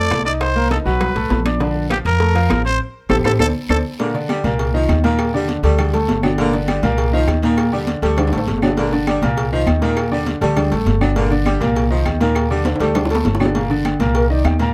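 Driving and fiery, this short salsa cut in G minor charges along at 201 BPM in a straight 4/4. A growling trumpet carries the opening melody with a raspy, gritty edge, light vibrato and plate reverb, while a brilliant grand piano and a dark, woody pizzicato upright bass sit up front throughout. Behind them, a busy percussion bed of thin-skinned high-tuned congas, tight bongos and cowbell, ringing timbales and agogo bells, woody claves and a raspy guiro drives the groove. A band accent and drum fill close the trumpet's phrase near 4.0 seconds, and a clear, present saxophone section then takes up a low second line over a cycling Gm, Cm7, Ebmaj7 and D5 progression, punctuated by further drum fills. In the final moments, a distant, reedy bamboo bansuri with a crisp attack steps out for a brief solo starting at 14.2 seconds, all within a light reverb.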